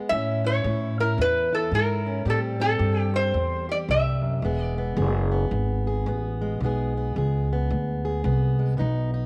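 A small room with light reverb frames this laid-back, soulful acoustic country blues fragment, cut from a longer piece and lasting about 9.3 seconds. At 110 BPM in 4/4 with a loose swing on the eighth notes, a plugged-in parlour steel-string guitar fingerpicks a boxy, warm accompaniment through a chord movement from A to Am7 to E, tuned slightly above standard pitch. Up front, a metal-body resonator guitar played with fingerpicks and a slide carries a bright, nasal, metallic melody in its upper register from 0.1 seconds until it falls away at 4.9 seconds. The upright bass, also up front, plucks its gut strings for a woody, dark, thumpy low end, colored by transformer saturation, and holds through to the close at 9.3 seconds.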